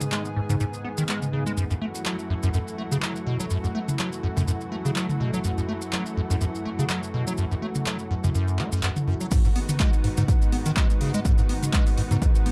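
A lush, detuned sawtooth pad opens this trippy, raw acid house cut at 124 BPM in G# phrygian, joined from the start by a booming analog drum machine with metallic hats, handclaps, toms and crash, plus grainy, mellow maracas sitting close, all riding a 55% swing on the sixteenths. At 0.1 seconds a squelchy, hollow square-wave acid bass riff comes up front, resonant and saturated, with a filter sweep, a fast attack and a decaying tail, colored by analog chorus, cassette tape and delay. The pad holds bright, thick sustained chords with a slow attack and long release, treated with chorus and sidechain pumping, moving from G#m to F#m7. At 9.3 seconds the drop arrives as a punchy, tape-warm electronic kick pushes up front and the harmony shifts to G#m7. A small room with a moderate reverb of about half a second frames the dark, warm production.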